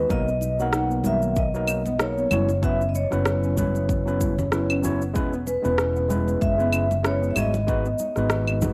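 Sunset chillout in B major at 95 BPM, cut from a longer piece, with a relaxed, warm mood and a 16th-note swing of 56%. A dark, smooth vibraphone struck with medium hard mallets carries the melody between B4 and F#5, its metallic ring shaded by a medium motor vibrato and tape echo. Beneath it, an overdriven tine electric piano, barky and played through a combo amp, supplies accompaniment with its own tape echo, while a soft, round pluck with a detuned, wave-folded tone sits in the background with arpeggios drenched in lush chorus. A round, up-front fretless electric bass anchors the low end. A deep, layered electronic kick and an electronic shaker, rim click and claves enter at 0.1 seconds in a small room ambience, with soft-handed congas joining at 0.4 seconds from the background. The chords move from Bmaj7 through F#7sus4 and E6 to G#m7 in a dry, gritty hardware recording with little reverb.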